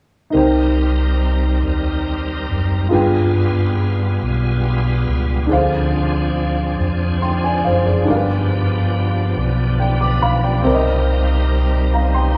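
Drenched in a long cathedral reverb, this excerpt of slow gospel in C harmonic minor moves at 47 BPM in a straight 6/8, its fervent, solemn mood built on a progression from Cm7 through G7b9, Dm7b5 and G7 before settling back on Cm7 at 10.6 seconds. A round, punchy fingered electric bass sits up front beneath a woody upright piano whose intimate accompaniment carries audible action noise. A bright, shouting tonewheel organ holds sustained chords through a lightly overdriven fast rotary speaker with chorus vibrato, while the piano adds a fill from 9.4 seconds.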